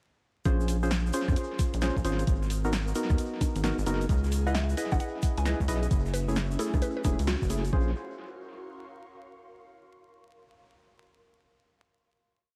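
At 0.5 s this moody, bouncy two-step UK garage piece opens straight into its drop: a dark, organ-like stab riff with chorus and dub echo moves one chord shape in parallel over minor ninth harmony, a rubbery, wave-folded square bass skips up front, an overdriven knocking kick drives the groove, and a punchy analog drum machine adds swung hats, rims, congas and a punchy snare, all warmed by tape echo, beside a grainy, hand-played egg shaker. From 1.5 s an ethereal, airy pad with phaser and sidechain pumping drifts in the background through slowly shifting chords, and at 4.5 s a woody, mallet-like pluck with 12-bit sampler grit and tape echo adds short, mellow phrases before a band accent and a final held chord. The whole mix sits in echo-heavy digital ambience dusted with vinyl crackle.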